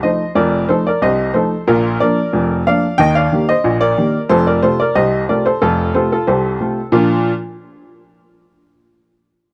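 In a straight 2/4 at 91 BPM, this playful, cheerful ragtime fragment in Bb major, tuned to A4 = 437 Hz and cut from a longer piece, features a solo upright piano with a woody, slightly detuned tone and short sustain, placed up front in a dry, close 1970s-style small-room recording, moving from F7 through Bb, Eb and F before landing on Bb at 6.9 seconds and stopping at 7.3 seconds.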